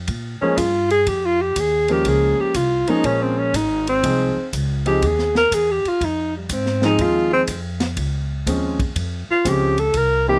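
Brassy and sultry, this short cut from a longer big band swing piece in 4/4 rides a swung feel. A breathy tenor saxophone carries the melody as a solo from start to finish, mellow and up front with light vibrato and scooped notes, though its tone has a distant, roomy quality. Beneath it, a concert grand piano adds natural accompaniment with deep bass, while a woody, thumpy upright bass with gut strings plays pizzicato. The drum kit sounds airy and polished, with dark cymbals, a high-tuned snare and a punchy kick working across hi-hat and ride. The harmony moves from Bbm7 to Fm7 at 4.0 seconds and on to Dbmaj7 at 8.0 seconds, and the overall sound is dry with little reverb.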